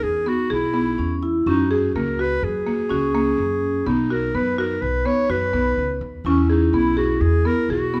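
Contemporary chamber music in an uneven 5/4 at 125 BPM, shimmering and restless, where a warm, close-miked classical clarinet carries the melody up front over a mellow, metallic vibraphone second line with slow motor vibrato, bright, dry arpeggios from a buzzing hardwood marimba, and a dark pizzicato upright bass on steel strings, all moving through E, F#add9 and B chords in a moderate recital-hall reverb for 8 seconds cut from a longer piece.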